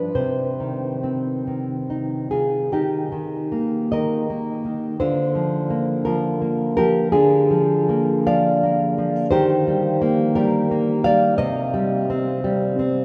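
Intimate and melancholic, this romantic piece for solo classical guitar drifts in 6/8 at roughly 45-58 BPM in dotted quarters, its rubato feel letting each phrase breathe freely. Set in Eb major and tuned to A4 = 437 Hz, the nylon-string guitar plays alone for the full 13.0 seconds, ranging from G2 up to F5 with a warm, thumb-plucked tone and audible finger squeaks that keep it sounding close and human. The harmony opens on Cm, moves to Eb at 2.7 seconds where a new section begins, then passes through Bb/D and Bb7/D before returning to Eb and settling back on Cm at 11.4 seconds. The guitar sits up front, yet it is bathed in a vast cathedral reverb with a 6.6-second decay, so every note lingers and blooms through the echoing space. This brief passage is taken from a longer piece.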